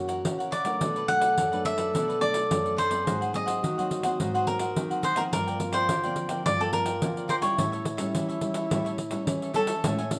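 Set in a moderate studio reverb, this lively, playful samba and choro passage, cut from a longer piece, features a crisp, picked cavaquinho carrying the melody up front, while a mellow, jazz-style trombone sings a second line with vibrato and scooped notes until 9.8 seconds. Beneath them, a full-bodied, thumb-plucked nylon-string guitar with fresh strings and a second picked cavaquinho share the accompaniment. A close, dry pandeiro adds jingly, hard-handed percussion over a harmony that moves from F#7 through Bm7, G#9 and Gm7 to A7.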